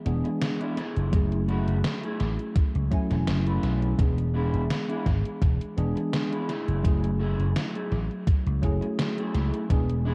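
Hazy and melancholic, this vaporwave fragment at 84 BPM in 4/4 drifts in F# minor with a light 16th-note swing, cut from a longer piece. A bell-like tine electric piano, bright and clean, sits up front with lush chorus and tape echo, moving between E7 and F#m9 chords. Beneath it, a punchy vintage slap bass with tube saturation holds the low end, while a dark, slightly broken-up electric guitar plays a fingered riff through its own chorus and tape echo. A gated 80s digital drum machine supplies overdriven hi-hat and a gated-reverb snare, joined at 1.1 seconds by a thumpy, overdriven electronic kick placed up front. The whole mix is echo-heavy and bathed in light digital ambience, with a cassette-tape patina that deepens its dreamy, faded character.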